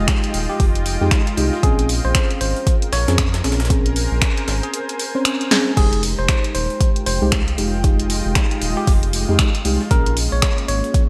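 Deep house at 116 BPM in F minor with a 16th-note swing, this moody excerpt of a longer piece rides an up-front, overdriven electronic kick and a punchy analog drum machine with crash, finger snaps, hi-hat and gated-reverb snare, while a gritty, compressed breakbeat kit with a high-tuned snare sits in the background and a drum fill lands at 5.5 seconds. A round, dark analog bass and a soft FM electric piano playing chorused, delayed stabs both pump against the kick over Fm9 and Bbm9, beneath a blurred granular cloud pad. From 0.5 seconds a bell-like tine electric piano carries the melody with 12-bit sampler grit and digital delay, all framed in light reverb and a bright 1980s-style digital production.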